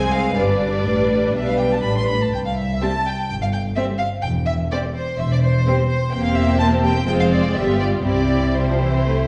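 Heard from further back in a reverberant recital hall, this graceful, cheerful excerpt of a quick classical-period movement for string orchestra in C major moves at 125 BPM with a loose, rubato pulse, as a warm, vibrato-laden first violin section carries an expressive melody over a smooth, even second violin line, an intense, close-sounding viola accompaniment, a dark, soft-attacked cello bass and a rich double bass section, the harmony passing from G through C and F minor to a G7 cadence that resolves to C.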